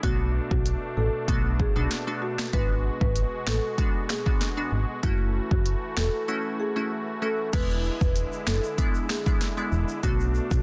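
A straight 4/4 dancehall groove rides on an electronic afro-pop drum kit with a deep kick, a sharp, softly clipped snare, smooth hats, finger snaps and crash, anchored by a punchy, round FM bass in this bouncy, hypnotic excerpt from a longer piece. A woody marimba carries the melody through tape echo while a glassy, crystalline wavetable pluck with chorus supplies accompaniment, and a shimmering pipe organ with strings celeste holds soft sustained chords that pump under sidechain compression. A warm tube shaker joins at 7.5 s as the harmony moves through Bm7, G#m7b5, F#m7 and E7, all set in a small room and a dense, heavily limited modern master.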